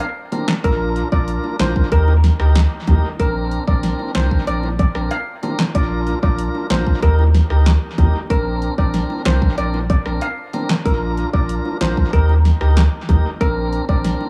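A straight 4/4 dancehall groove at 94 BPM drives this bouncy, summery cut from a longer piece in Bb major. The electronic pop drum kit sits up front with a punchy kick, fat snare, handclaps, hi-hat and rim click, its layered hits sent through dub echo. From 0.6 seconds, a deep, thick saturated sub bass with a fast attack anchors the low end between Bb1 and Eb2. A lightly overdriven tonewheel organ with vibrato fills the middle over a cycle of Bbadd9, Bb and Eb chords, its echoes trailing behind. Above it, a dark, shimmering steel pan carries the melody with metallic notes ringing through dub echo, while round, low-tuned bongos played with soft hands sit distant in the background of a dry, echo-heavy mix.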